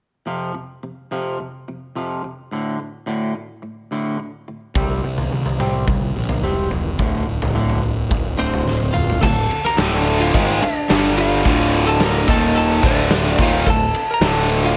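Quiet-loud alternative rock with an angsty, dark mood, this excerpt opens with a clean, twangy electric guitar playing fingered arpeggios up front, joined at 4.8 seconds by an overdriven, fuzz-toned picked bass and a huge acoustic arena drum kit with a punchy kick and medium-tuned snare in a big room. A compressed, slightly broken-up lead guitar carries the melody from 8.4 seconds, and after a drum fill the heavier section arrives at 9.2 seconds. There, a tight, bright distorted guitar riff sits up front while a raw, overdriven garage guitar plays its own riff in the background.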